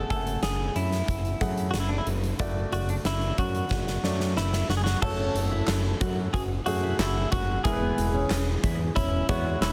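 This earnest, driving piano-driven pop excerpt in F# minor at 91 BPM opens with a clean, compressed electric guitar carrying the melody with delay, over clear, polished baby grand piano accompaniment, a fat, saturated, nasal analog bass sitting up front, and a huge arena drum kit with bright cymbals and a punchy, softly clipped kick in a pumping hall. A drum fill at 3.7 seconds leads into a new section at 5.0 seconds, where the harmony moves from F#madd9 and D/F# to F#m and E. A full-bodied fingerpicked acoustic guitar riff enters in the background at 5.2 seconds, followed by hollow, vintage-sounding group handclaps, all within a dense, heavily limited modern master.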